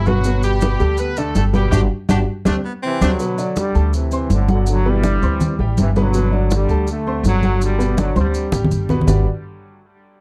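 A woody, up-front upright bass drives this festive, sunny salsa, cut from a longer piece, played pizzicato at 163 BPM in G major. Close, dry congas with a thin skin and mellow, grainy maracas in a live room keep the straight 4/4 pulse. A clear but boxy grand piano with short sustain accompanies through a steady alternation of Gmaj7 and D7sus4. A punchy horn section with vibrato opens on the melody and joins a band accent before dropping out at 3.1 s, as an edgy baritone saxophone slips in briefly on a second line. From 2.8 s a tight trombone section with a smooth top and light vibrato carries the tune, trailed by tape echo, all within light reverb and a dark, warm production.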